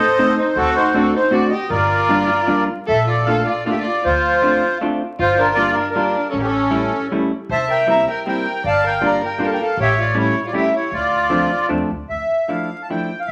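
Musette waltz in a whirling, nostalgic rubato 3/4, with a reedy, sweet accordion carrying the melody up front over a rich, vibrato-laden bowed violin second line that stops at 11.7 seconds, a dark, clean hollow-body electric guitar fingering the accompaniment, and a woody, growly pizzicato upright bass entering at 0.6 seconds, all set in a large studio reverb under a layer of vinyl crackle in this brief excerpt ending on a D minor add9 chord.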